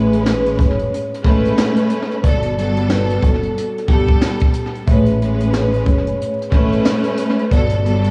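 Boom-bap hip-hop at 91 BPM in A major with a soulful, swung 16th-note feel, where a mellow, ringing soft-mallet vibraphone melody floats over lush, up-front bowed strings with expressive vibrato, both trailed by tape echo, while a round, deep fingered bass and a brushed acoustic kit with a high-tuned snare, boomy kick and 12-bit sampler grit entering at 0.1 s move between Amaj9 and Gmaj9 in an echo-heavy small-room mix dusted with vinyl crackle, cut from a longer piece.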